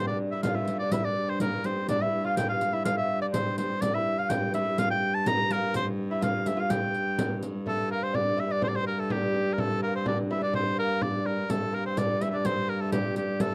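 Mysterious and driving, this medieval dance in 2/4 puts a clear, lightly vibratoed classical oboe melody up front over a delicate fingerpicked lute second line on doubled gut strings and a smooth, even wheel-bowed hurdy-gurdy drone, while a small, bright frame drum sounding distant in a large room and a soft-handed riq with jingles enter at 0.4 seconds, the riq dropping out at 7.6 seconds and returning at 11.5 seconds, captured in a dry, close 1970s-style studio sound with light reverb.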